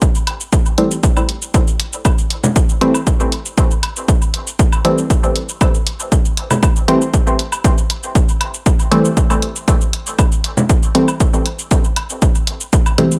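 A filtered dub chord stab sits up front in this hypnotic, deep dub techno excerpt, its muted, detuned sawtooth tone shaped by a fast attack and short decay. Treated with chorus, phaser, sidechain pumping and dub echo, the evolving stab enters at 0.8 seconds and holds on a single Am7 chord in A minor, ranging from E3 to C4. Underneath, a punchy analog kick drives a straight 4/4 pulse at 118 BPM, placed up front and re-recorded in a large room, while an electronic shaker and hi-hat share that same big-room character at a lower level. Layered woodblock and congas, tape-warm and re-recorded in a small room, add percussion that pumps with sidechain and trails off into dub echo. A light reverb ties the parts together across this 13.2-second cut from a longer piece.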